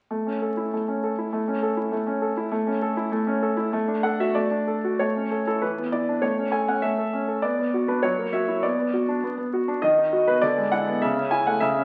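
Through the crackle of a very old 78 rpm record and the wet reverb of a stone room, a clear, intimate baby grand piano sits up front with its action noise audible, playing a graceful, cheerful classical-period sonatina in A major at 100 BPM in 2/4 with a rubato feel, turning toward B minor around 7.4 seconds before settling back on A as this fragment of a longer piece closes.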